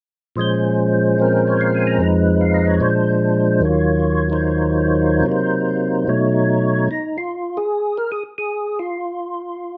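A swung 148 BPM jazz groove in 4/4 carries this late-night, smoky Bb minor excerpt, where a solo percussive tonewheel organ sits up front with a fat, clean tone, third-harmonic percussion, audible key click, chorus vibrato and a slow rotary speaker, moving through Bbm7, Fm7b5, Bb7, Ebm7, Cm7b5 and B9 before the chords drop away at 6.9 seconds, all in a moderate studio reverb.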